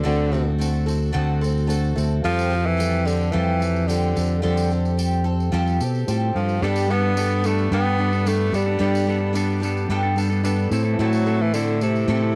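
Folk rock with a heartland rock lean, this nostalgic, open-road excerpt from a home cassette recording sets a bright, close-miked tenor saxophone melody with vibrato over a punchy, up-front fingered electric bass and a shimmering, octave-doubled twelve-string acoustic guitar, both the saxophone and guitar carrying a cassette-tape tint. A very quiet, reedy electric piano with fast tremolo adds a fill at 1.2 seconds, a jingly, band-limited tambourine sits low in the mix, and a twangy, compressed clean electric guitar riff enters at 6.6 seconds. The sound is dry, with little reverb.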